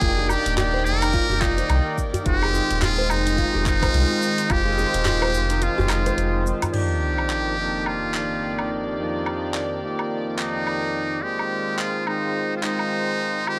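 A muted trumpet with a buzzy, brilliant tone carries the melody over reedy harmonium, soft sul tasto strings, fingerpicked nylon-string guitar with 12-bit sampler grit, a round analog bass, an overdriven electronic kick and a layered deep house kit with claps, shaker and woodblock, soon joined by a dry djembe with metal rattles, in this earthy organic downtempo piece at 107 BPM with a swung 16th-note feel. The harmonium and strings pump against the sidechain while analog delay trails the trumpet, guitar and harmonium, all within a dry, gritty cassette sound. The kick stops at 4.6 seconds, and the guitar, bass and djembe fall away by 6.7 seconds, when a sub drop lands and a very quiet, ringing bronze singing bowl hovers over the Ebmaj7/F and Fm7 harmony.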